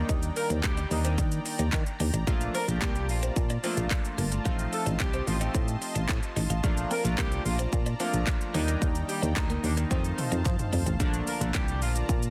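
A dry, dense and heavily limited mix opens this upbeat, euphoric dance-pop excerpt in Bb major at 110 BPM, where a punchy, round FM bass and an up-front house kit with metallic hats and handclaps drive a straight 4/4 feel, with a drum fill from 9.9 to 11.0 seconds. Glossy, chorused retro synth keys and a smooth, detuned supersaw, sitting in the background, pump under sidechain, while a bright, twangy twelve-string electric guitar plays a clean riff in the background until 11.0 seconds. A horn section with light vibrato carries the melody through a digital delay from 0.4 seconds, joined by a crisp, very quiet group handclap over chords moving from Ebmaj7 through F7 to Bbmaj7.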